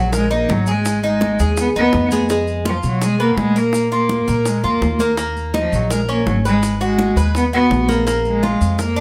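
A straight 4/4 groove at 166 BPM drives this danceable, nostalgic Cuban son and guajira in Eb minor, with very quiet, high-tuned congas, round, low-tuned bongos struck with hard hands, and grainy maracas joining at 0.1 s, the bongos and maracas sitting in the background. Up front, a woody, growly pizzicato upright bass holds the low end while a bright, metallic Cuban tres picks arpeggios on its double strings, and a single bowed cello carries the melody with a soft-attack, floating sul tasto tone that sounds somewhat distant. The harmony moves from Ebm through Abm, Fdim, Bb5 and Eb5 to Abm7 before returning to Bb5. Close, detailed miking and light reverb shape this short cut from a longer piece.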